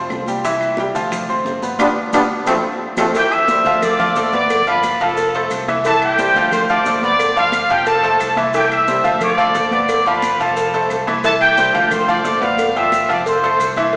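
A worn but brilliant concert grand piano opens this joyful, festive salsa excerpt up front, with a round, fingered electric bass underneath, and a percussion bed of congas, bongos and cowbell, claves, and maracas joins almost at once. The high-tuned congas snap with thin skins, the low-tuned bongos and cowbell sound compressed and saturated, and both sit in the background, while the woody claves stay very quiet and the maracas add a grainy, vintage shimmer. At 1.8 seconds a smooth-topped trombone section enters with a tight band accent, capped by a short drum fill before it drops out. From 3.2 seconds a punchy trumpet section with vibrato takes the melody up front, riding high in a tight, pop-style blend over a repeating C, Dm7, G7, F progression. Everything is bathed in a wet church reverb, giving the cut a spacious hall sound heard through a small speaker.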